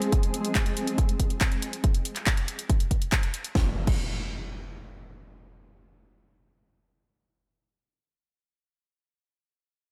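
A short cut from a longer uplifting trance piece, this recording has a produced sound with light reverb, running at 140 BPM in a straight 4/4 with a driving, euphoric mood. A punchy electronic kick drum sits up front from 0.1 seconds, layered and tape-warm, re-recorded in a small room. A house drum kit plays from the start with crash cymbal, handclaps, hi-hat and a cracking snare, its hats and cymbals pumping against a sidechain. The first section gives way to a second at 3.6 seconds, where an electronic impact arrives up front and rings on after the drums stop at 4.0 seconds. The effect carries the close alone, trailing out to 7.5 seconds.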